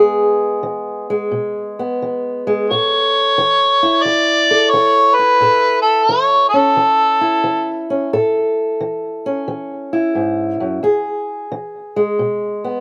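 Laid-back and soulful, this short acoustic country blues excerpt, cut from a longer piece, moves at an easy 88 BPM in 4/4 with a swung eighth-note feel. A fingerpicked old ladder-braced acoustic guitar carries the accompaniment throughout, its dark, woody, boxy tone and old strings sitting up front with a touch of slapback echo. At 2.7 seconds a mellow, vintage-sounding harmonica enters with a jazz-style solo line, coloured by light vibrato and scooped notes, and it stays in the foreground until 7.8 seconds. The harmony rests on E, shifts to A as the harmonica comes in, and returns to E at 10.8 seconds. Recorded outdoors with little reverb, the sound is dry, giving the duo an intimate, unadorned presence.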